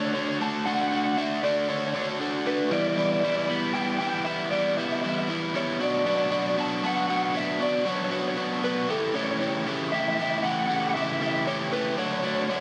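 Hopeful and euphoric, this short rock passage cut from a longer piece moves in a straight three-beat lilt. A double-tracked, overdriven electric guitar sits up front with a bright, picked riff in its lower and middle range. Above it, a second electric guitar played through a small old amp carries the melody with a slightly broken-up, lo-fi, compressed tone and a slapback echo. Both guitars play throughout the full 12.6 seconds, moving through Dmaj7, Em7, Bm and A7/C# before returning to Dmaj7 at 12.0 seconds. A moderate large-studio reverb gives the pair a sense of open space.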